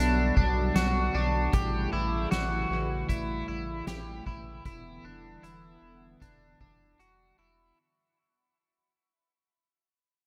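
Out front sits a bright, twangy electric guitar at the edge of break-up, picking compressed arpeggios soaked in analog chorus, dub echo and shimmer reverb. This melancholic, ethereal dream pop moves at a slow 77 BPM in a straight 4/4, tuned to A4 = 444 Hz, and cut from a longer piece. Beneath the guitar, a hollow, flute-like pad holds slow-attack chords through ensemble chorus and shimmer reverb. A thick, saturated sub bass anchors the low end with a fast attack and long sustain. A soft-mallet drum kit enters at 0.4 s with a fat snare, boomy kick and hi-hat, its hits trailed by dub echo. The harmony drifts from Gmaj7/B to A7 and then Em7 in an echo-heavy mix that fades out over its 7.8 seconds.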